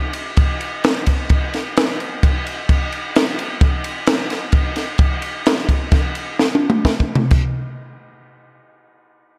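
The recording has a big arena sound, set in a moderate recital hall reverb with a 1.7-second decay. This short rock passage, cut from a longer piece, moves at 130 BPM in a straight 5/4 feel, with a mood that is wistful yet bright. A compact acoustic cocktail drum kit carries the music, entering at 0.1 seconds with kick drum, snare drum, toms, ride cymbal and crash cymbal. The kit sits up front and dry in tone, pairing a punchy kick and a high-tuned snare with dark cymbals. A drum fill begins at 6.4 seconds, and the kit stops at 7.4 seconds as the piece moves into a new section.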